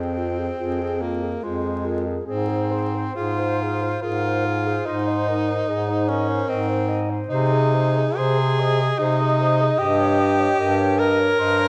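A clear tenor saxophone with vibrato sits up front in this lyrical classical piece for a single-reed quartet, carrying the accompaniment in a rubato 3/4 that feels serene and unhurried. Beneath it, a bright, vintage-toned bass clarinet holds the bass line, also placed close to the listener. The melody belongs to a soft-attacked clarinet, present yet set further back in the blend, while a mellow alto saxophone with light vibrato joins at 0.6 seconds on a second line, sounding distant and roomy. The harmony moves from Fm through Fm/Ab, Ab and Ab/C before settling on Eb7/G. A moderate stage reverb, a dark production and a touch of vinyl crackle give this brief excerpt, cut from a longer piece, a gentle, aged glow.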